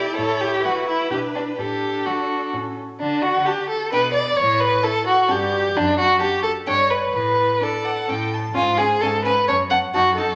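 A quick classical-period movement for string quartet in 3/4 at 130 BPM, cheerful and spirited in D major, cut from a longer piece. The second violin sits up front and leads the balance with a rich, expressive tone, vibrato and portamento, while the first violin carries the melody in a clear, close voice; the viola adds a focused, full-bodied accompaniment in the background, and a distant cello supplies the bowed bass line. A large studio reverb gives the quartet a wet, spacious sheen with a soft top end, and the harmony turns toward F#m at 9.5 seconds.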